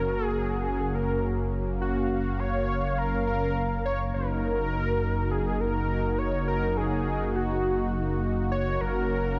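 From the first beat, a thick, bold unison saw lead with vibrato and cassette-tape and analog-delay colouring carries the melody over a mellow, chorused analog pad and a deep, rumbling detuned saw bass held on F#1, forming a nostalgic, uplifting synthwave excerpt at 103 BPM in F# major that moves from F# to D#m/F# at 4.1 seconds and back by 8.8 seconds, all bathed in a dreamy plate-reverb haze.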